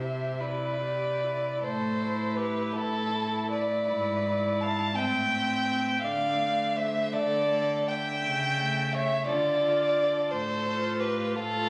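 Captured on a phone in the room with compression, a club reverb and a moderate concert hall reverb of 2.3 s, this 11.7-second excerpt from a slow, rubato romantic string quartet movement in A minor and 6/8 at 47-59 BPM, tuned to A4 = 438 Hz, feels tender and warm: a dark, floating sul tasto violin carries the melody with a soft attack, a woody, smooth-topped second violin with vibrato sits up front, an intimate viola with airy bow and light vibrato fills the accompaniment, and a rich, pure sul tasto cello holds the bass as the harmony moves from C through Am, E7/G#, Dm and A7/C# to F/A.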